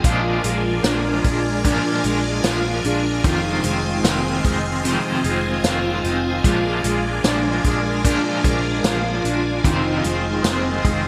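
A bright, 1980s-style digital sheen and a moderate plate reverb wrap this short dream pop fragment, cut from a longer piece, in an ethereal, hazy mood at a slow 75 BPM in straight 4/4. A vintage drum kit with gated reverb drives the groove with a punchy kick, a medium-tuned snare, hi-hat and tambourine, its top rolled off, while a foam-muted fingered bass sits dark and round underneath. Up front, a twangy picked electric guitar at the edge of break-up carries the accompaniment through tremolo and subtle chorus, and a clean, fingered second guitar spins arpeggios through ensemble chorus and digital delay. Above them, a phased string machine holds soft-attack sawtooth chords that swirl with ensemble chorus and phaser. A very quiet, slightly out-of-tune celesta adds delicate bell-like touches from 0.0 to 3.6 seconds and again from 8.4 to 10.0 seconds as the harmony rocks between Bb7 and Fm7.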